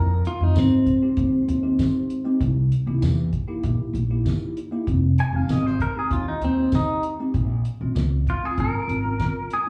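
Heard live through a club PA with a light wash of room reverb, this brooding, smoky straight-eighth soul blues fragment opens with a twangy, compressed clean electric guitar soloing up front from the start through 4.9 seconds, its picked lines dressed in spring and plate reverb with slapback echo. A woody, thumpy pizzicato upright bass on gut strings sits beside it until 9.2 seconds, while a cloth-damped, thuddy drum kit with a fat snare, tight kick and tambourine adds dark, rolled-off pulse with its own slapback. A bell-like tine electric piano comps quietly underneath through phaser, plate reverb and slapback, moving from Fm7 and C7#9 to Fm7 and Bbm7.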